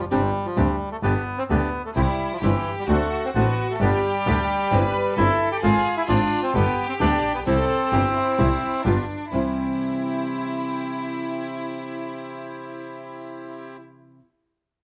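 A loose, rubato pulse in common time gives this tango fragment a playful yet nostalgic sway, as though the players are stretching each phrase. An up-front bandoneon carries the melody with a bright, airy, reedy voice, while a single bowed double bass sits just as close beneath it, focused and singing with vibrato. A second bandoneon adds darker, smooth stabs from further back, and a small, thumb-plucked nylon-string guitar gives warm acoustic accompaniment in the background. At 2.0 seconds a close, earthy bowed violin section joins with a second line, shaded by light vibrato. The lead melody drops out at 8.8 seconds as the harmony turns from a wistful Fm/Ab through G7 back home to C, and the guitar rings on until 14.2 seconds, all inside a moderate spring reverb and small-room ambience.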